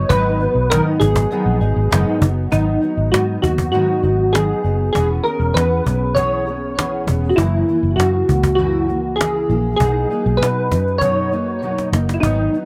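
Indie pop in a bedroom pop vein, this hazy, lonely snippet from a longer piece sets a soft, mellow electric-piano-like synth melody up front, treated with chorus and tape echo, over dark, full-bodied fingerpicked steel-string acoustic guitar carrying chorus and vibrato, a round, punchy foam-muted electric bass, and a snappy cajon struck with hard hands that plays a fill at 11.6 seconds, all in a dry, close 1970s-style studio sound.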